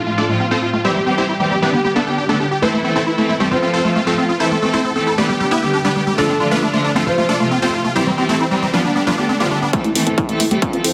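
Bittersweet and soaring, this uplifting trance excerpt at 135 BPM in A minor sets huge, detuned supersaw chords carrying the melody with sidechain pumping and digital delay over a bowed string section rich with vibrato, a squelchy, resonant acid bass playing arpeggios through a filter sweep, and a soft, felt-muted upright piano in the background until 7.6 s, before a very quiet swell and riser at 9.1 s leads into a build-up at 9.7 s, where a mellow plucky unison lead, overdriven electronic hi-hats and a distorted, up-front kick drum enter as the supersaw chords take a filter sweep.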